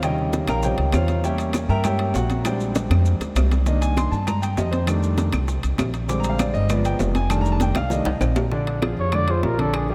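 Lively, danceable Afro-Cuban jazz at 198 BPM in Bb mixolydian, this clip from a longer piece opens with a clear, intimate grand piano soloing up front, its deep bass and audible action noise heard over a woody, growly pizzicato upright bass. Ringing high-tuned congas and metal-shell timbales sit behind, with round low-tuned bongos and dry claves very quiet in the mix and grainy maracas in the background, and drum fills break in twice before the maracas stop at 8.5 seconds. At 9.0 seconds a dark, breathy trumpet takes the solo with vibrato, punchy scooped notes and a smooth top, all set in a vast, echoing cathedral reverb.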